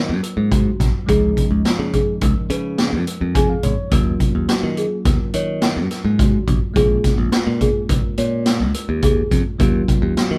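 Progressive instrumental band music in an uneven 5/4 at 106 BPM, intricate and bright, where a growly, punchy picked electric bass and a boomy, up-front street-band drum kit of hi-hat, kick and snare drive beneath clean tine electric piano chords moving from Ebm7 through Dbadd9 and Bbm7, with a brief electric piano fill at 3.1 seconds and a slightly out-of-tune, airy celesta playing delicate arpeggios, all captured as a band playing live in one room with light reverb.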